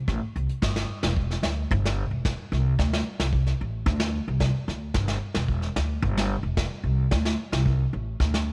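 An upright bass opens this short, carefree highlife cut, its plucked gut strings sounding woody and thumpy as it sits low in the register, ranging between E1 and D2. A vintage brush drum kit joins at 0.1 seconds, using brushes across a medium-tuned snare, a tight kick, rim clicks, hi-hat and dark crash cymbals. The kit has the intimacy of a small room and a rolled-off top end, while both parts sit up front in the mix. The steady straight 4/4 feel gives the sunny groove an easy, relaxed lift. The sound is dry, with little reverb, and the two players carry the music together through to the end at 8.5 seconds.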